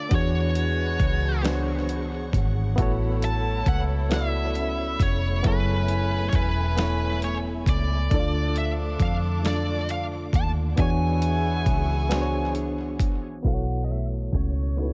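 Slow six-eight R&B with a sensual, warm mood, this excerpt from a longer piece is built on a round, punchy, up-front muted electric bass and a gritty, compressed sampler-style drum kit of finger snaps, hi-hat, thumpy kick and snare, while a barky, reedy electric piano with light overdrive, fast tremolo and tape echo carries the accompaniment through chords such as E13, A69 and F#m11. A bright, high-gain lead guitar with distortion and tape echo sings the melody over a dark, clean fingered electric guitar second line with subtle chorus, as a lush, bowed string section with vibrato and portamento and a tight, jazz-style horn section adding echoed stabs sit in the background. The whole mix is steeped in echo-heavy ambience and a low-pass filter, and the strings drop out at 13.4 s as a filter sweep carries the close to a B9sus4 chord.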